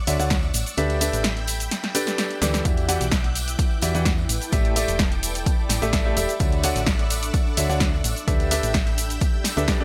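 A silky, chorused analog string pad opens this bittersweet, soulful piano house excerpt at 128 BPM, quickly joined by a clear, intimate baby grand piano riff with dub echo and audible action noise, a round, dark FM bass, a punchy, overdriven analog drum machine with hi-hat, shaker and snare, a background tambourine, and an up-front electronic kick that drops out from 0.8 to 2.7 seconds around a drum fill, while a cloudy, blurred granular pad drifts in at 3.4 seconds over pumping Dmaj9, G69, Em9 and A7sus4 chords.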